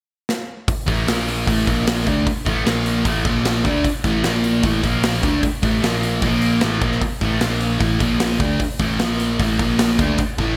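Menacing and aggressive, this hard rock excerpt at 152 BPM opens with a drum fill at 0.3 seconds on a big, punchy kit with gated reverb, before a sludgy, double-tracked overdriven guitar riff grinds between A5 and Bb5 from 0.7 seconds over a bright, growly picked bass, all set in a lush hall with bright 1980s-style digital production.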